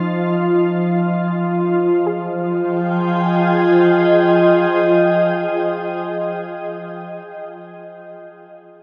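A glassy FM pad holds a sustained Fm9 chord up front, joined from the start by a calm, organ-like drone and a very quiet, soft, round pluck playing arpeggios, in this reflective, melancholic ambient piece in free time and F minor. The pad's slow attack and long release carry an ethereal, vintage warble, while the detuned drone sits quieter beneath it; both are thickened by ensemble chorus and steeped in a vast, echoing reverb. Cut from a longer work, the passage has the pluck stop at 6.4 s, the drone at 6.5 s and the pad at 7.1 s.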